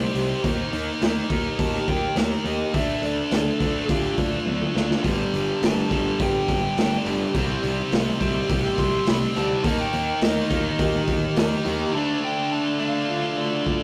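A dark, smooth overdriven lead guitar solo rides over a bright high-gain riff, a tremolo-shimmering arpeggiated guitar in the background and growly fuzz bass in this restless, cathartic excerpt of quiet-loud alternative rock at 104 BPM, with a raw, boomy garage drum kit up front, a drum fill at 4.5 seconds bringing in a hollow-bodied overdriven second riff guitar, and the bass dropping out at 11.8 seconds over an Eb, Dm, G, Cm progression in a rough stone-room rehearsal sound.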